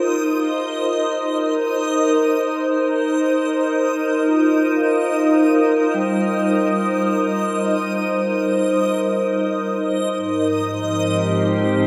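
A glassy FM pad sits up front, holding sustained chords from Ab2 to C5 with a slow attack, long release, ensemble chorus and its own ethereal reverb, giving this weightless, peaceful ambient passage in Ab major its bright core. A vibraphone played with soft mallets fades in from the start, its mellow, metallic arpeggios ringing with a medium motor vibrato and trailing delay before it stops at 10.2 seconds. High above, a reversed, granular texture between Eb5 and Eb6 swells dreamily with a soft attack and sustained tone. The music floats in free time, tuned to A4 = 438 Hz, resting on Abmaj7 before shifting to Fm7/Ab at 10.1 seconds. A lush hall reverb with a 3.0-second decay bathes the whole sound in this short section cut from a longer piece.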